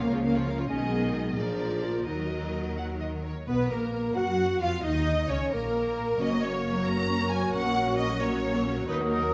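Lively and graceful yet dramatic, this fast romantic orchestral passage in 6/8 is cut from a longer symphonic movement. A distant, shadowy violin section carries the melody from the background with expressive vibrato. Beneath it, a second, warm violin section and a dark solo clarinet trace supporting lines, while a rich, smooth viola section fills in the accompaniment. The low end rests on bowed cellos with soft attacks and lush, woody double basses, and a very quiet, tight French horn section holds distant sustained chords. At 3.5 seconds an airy, mellow flute section enters with a crisp attack on a higher second line, joined by a solo bassoon with a gentle attack in the accompaniment, both playing through to 9.3 seconds. A moderate scoring-stage reverb gives the ensemble a spacious, roomy sense of place.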